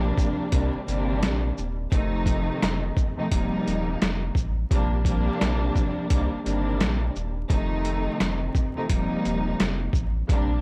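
Lush, distant bowed strings with vibrato, filtered and cassette-tinged, open this dark, moody boom-bap hip-hop excerpt at 86 BPM alongside a deep, tube-saturated sine-and-triangle sub bass with octave, before a muffled, pitched-down sampler-style drum kit enters at 0.2 seconds with a thumpy kick, medium-tuned snare, rim click, hi-hat and shaker, swinging over a looping Bb69, Cm9, F7 and Eb69 progression in a dry, gritty recording dusted with vinyl crackle.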